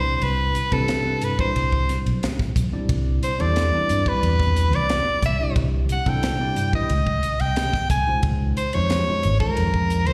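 A forceful, edgy soprano saxophone with vibrato and slapback echo soars up front over bell-like electric piano bathed in lush chorus and a growly, amped fingered bass, with a crisp fusion drum kit joining at 0.2 s with a high-tuned snare, tight kick and dark cymbals, in a slick electric jazz fusion passage cut from a longer live performance heard through the venue's sound system in a lightly reverberant recital hall, its harmony moving from Cmaj9 to Dbmaj9 at 6.9 s.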